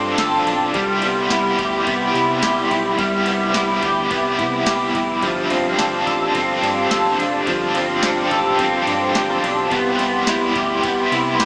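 An ethereal, dreamy dream pop excerpt in C major at 107 BPM opens at once with a bright, overdriven stack guitar playing accompaniment through tremolo, lush chorus and slapback echo, alongside a warbling, nostalgic tape-like pad holding sustained chords, and a slightly broken-up electric guitar picking arpeggios up front through ensemble chorus and digital delay. A round, detuned analog bass anchors the low end from the start, and a booming analog drum machine joins at 0.2 s with a deep kick, crisp snare, ride cymbal and tambourine. The harmony rocks slowly between G9sus4 and Cmaj7 in a straight 4/4. The pad's lo-fi, wave-folded tone and slow attack sit dark behind the guitars. A lush hall reverb and digital ambience wrap the mix in a big arena sound that is also tinged with a small-speaker character, until the clip is cut off at 11.4 s.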